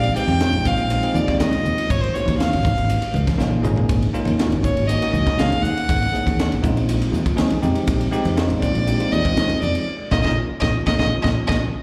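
Soaring and funky, this electric jazz fusion excerpt at 120 BPM sets a rich, floating violin melody with slapback and tape echo over bell-like tine electric piano chords, a bright fingered electric bass, a crisp drum kit with a high-tuned snare and punchy kick, and very quiet, thin-skinned congas entering at 0.3 seconds, moving between Bb9sus4 and Ab9sus4 with a drum fill at 3.4 seconds and a band accent and electric piano fill closing it out, all heard through a live venue PA with recital hall reverb.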